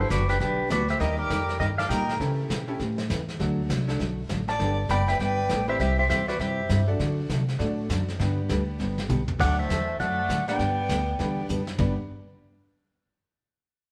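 A brisk swung 4/4 groove drives this cheerful, down-home western swing clip, cut from a longer piece. Upright bass, woody and up front, holds down the bottom alongside a vintage brush kit with dark cymbals and a tight kick that sounds muffled and lo-fi, adding a drum fill at 8.8 seconds. A metallic, jangly tack piano and a picked steel-string acoustic guitar fill in the accompaniment throughout. In short phrases starting at 0.0, 4.5 and 9.4 seconds, a twangy, clean pedal steel carries the melody up front with volume swells and slide, while a rich fiddle with light vibrato plays a second line beneath it. The band sounds like it is playing live in one room, bathed in a stone-room reverb, with chords moving through colorful turns like an Eb and an A7 before settling home on G.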